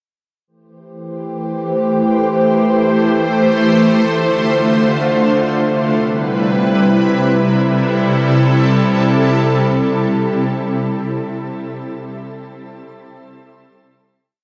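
In free time, this brief, ethereal hip hop piece rests on a solo shimmering ambient pad, detuned and warbling with a vintage, granular sheen and an octave-up shimmer, its chorus, tape echo and long release blooming into a spacious reverb within a dark production as it moves from Am7 through F6 and Cmaj7 before returning to Am7 for a sustained final chord at 7.3 seconds.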